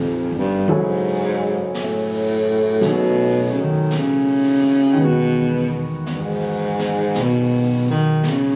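A breathy, whispered baritone saxophone carries the melody up front with a soft attack and vibrato over clear, long-sustaining grand piano chords, pizzicato upright bass with a woody thump and a brush drum kit entering at 0.7 seconds, in a late-night, intimate swung jazz ballad at 56 BPM that moves from Fm11 through Gbm9 and B13 to Emaj9, captured on a phone in a studio room with light reverb and compression.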